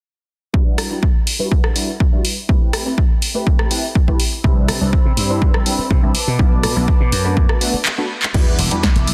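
The mix is dense and heavily limited and dry, in a nostalgic, groovy slice of filtered disco house cut from a longer piece. An analog electronic kick sits up front with a tape-warm tone. A punchy analog drum machine adds crash cymbal, handclaps, hi-hat, rim click and a softly clipped snare, with sidechain pumping on the hats and cymbals, while maracas sit barely audible underneath. A funky, detuned sawtooth polysynth comps through chorus and phaser with a filter pluck and moving notch, pumping and low-pass filtered as a filter sweep runs across the passage over Em7, Am7, Cmaj7 and Bm7. At 4.4 seconds a growly, bright slap bass and a clear, earthy studio violin section with light vibrato join, both pumping and filtered, the bowed strings holding sustained chords. A brief break with a drum fill at 7.9 seconds leads back to Em7.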